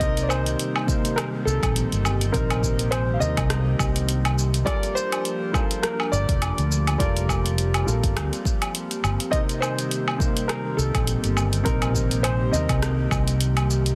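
Lightly reverberant and densely limited, this wistful, smooth sunset chillout excerpt moves at 103 BPM with swung 16ths over Cm7 and Gm9, as a dark grand piano carries the melody and a worn second grand piano with audible action noise plays the accompaniment, both through tape echo, while a breathy, detuned pad with chorus sustains chords in the background, a round fretless electric bass with ensemble chorus sits up front, a tape-warm deep house kit of hi-hat, rim click, shaker and woodblock adds soft clipping on the snare, and a deep electronic kick drum stops at 13.2 seconds.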